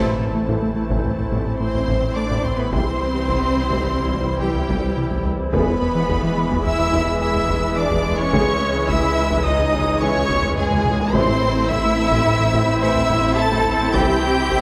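Tense and vast, this cinematic cue blends a symphonic orchestra with electronic textures in a straight 5/4 pulse, cut from a longer piece. Violins carry the melody high with light vibrato and a smooth top, above a lush second violin line, while dark, woody violas sit close in the background and expressive cellos add portamento to the bass. A clear, focused double bass section and a deep, round sub bass anchor the low end, joined by a smooth sawtooth synth bass riff tinged with ring modulation, and mellow French horns hold sustained chords behind the strings. A warbling, lo-fi tape-like pad with chorus and its own reverb drifts in at 0.2 seconds, lending a nostalgic, vintage haze. The opening lands with a full band accent and an electronic impact that lasts until 2.7 seconds, and a distant taiko ensemble played with heavy sticks enters at 0.5 seconds, driving a fill from 10.4 to 11.1 seconds. 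The harmony moves from Am through C, E and C#m before returning to Am, all set in a moderate scoring-stage reverb.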